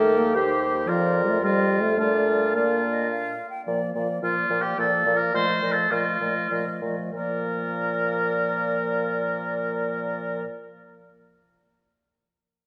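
A wind quintet opens together in a quick, graceful classical-period movement in 3/4 and Bb major, with the oboe's warm, lightly vibrato second line sitting up front while an airy, tongued flute carries the straight-toned melody in the background. Clarinet, mellow French horn and bassoon fill out the accompaniment and bass from a distant, roomy placement, the bassoon adding its own light vibrato, and a wet concert hall reverb surrounds the ensemble. The lively pulse of 94-112 BPM slows between 2.8 and 7.1 seconds, arriving on a Bb chord at 7.1 seconds in this short cut from a longer piece.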